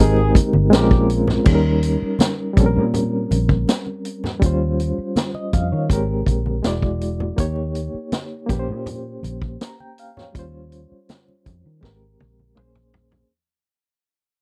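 A dry, close studio sound in the 1970s style frames this smooth, cinematic slice of lush soul, cut from a longer piece. A barky, reedy electric piano carries the accompaniment with light overdrive and a fast tremolo, sitting up front through its built-in speakers over rich chords such as Abmaj9, Bbm69 and Eb13. A horn section adds warm stabs with light vibrato in the opening second, gone by 1.1 s. A foam-muted fingered electric bass, round and punchy, anchors the low end, while a vintage drum kit with a punchy kick, medium-tuned snare, dark cymbals and toms drives from the front. Soft-handed, low-tuned congas ring in the background, and the passage fades out from 1.5 s, closing on a drum fill from 11.8 s.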